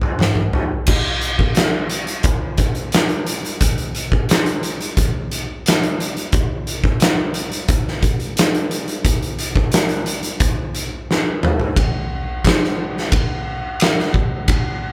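Sludgy and ominous, this straight 4/4 metal passage at 88 BPM is carried by an oversized, low-tuned acoustic drum kit played live in one room, its punchy kick, fat snare, toms, hi-hat, ride and dark crash cymbals sounding saturated, gritty and up front, with a fill at 11.1 seconds leading into a new section at 11.8 seconds.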